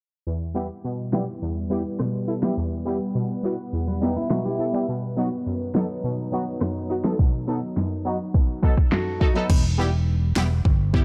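Dancehall with a sultry, bouncy feel, where brassy, detuned synth stabs with chorus and phaser ride over a moody, dark pad that pumps under sidechain, a deep-kicked, fat-snared electronic kit, brief fingerpicked nylon-string guitar arpeggios, and a punchy fingered electric bass that arrives at 9.5 seconds, all in light digital ambience with a filter sweep through the opening stretch of this cut from a longer piece.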